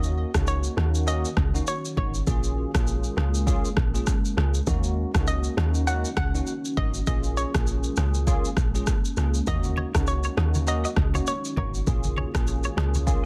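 A loping afrobeats groove at 100 BPM, swung on the sixteenths, is driven by a punchy, woody log drum bass and an up-front deep house kit of kick, rim click and shaker, its snare softly clipped, as Ebm7 and Bbm7 alternate in a sultry, smooth mood. A hollow, nasal square pluck carries the melody over bell-like tine electric piano with analog chorus, while a deep, moody pad with chorus and reverb sits in the background from 1.0 seconds. Low-tuned congas enter at 9.5 seconds and a clean semi-hollow electric guitar riff with subtle chorus and delay at 9.8 seconds, all in a dry, dense, heavily limited mix cut from a longer piece.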